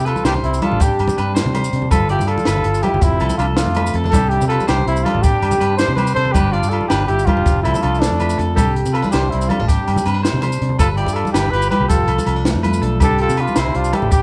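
Rolling in a lilting 12/8 with a straight feel, this sunny highlife guitar band groove rides on a compact cocktail drum kit, dark and smooth, with a high-tuned snare, a punchy kick and hi-hat, plus a short fill at 8.0 seconds. Ringing agogo bells and medium-tuned congas heard close and dry sit in the background alongside grainy, saturated maracas, while a round, amped fingered electric bass stands up front. A boxy, fingerpicked acoustic guitar adds swing-style accompaniment underneath, and an electric guitar at the edge of break-up spins twangy, picked arpeggios. Out front, a mellow trumpet carries the melody with light vibrato, scooped notes and a jazz touch, shadowed by a breathy second trumpet lower down. The harmony cycles through Csus2, G7 and F6 in a moderate large studio reverb that gives the feel of a band playing live together in one room, in a 14.2-second slice cut from a longer piece.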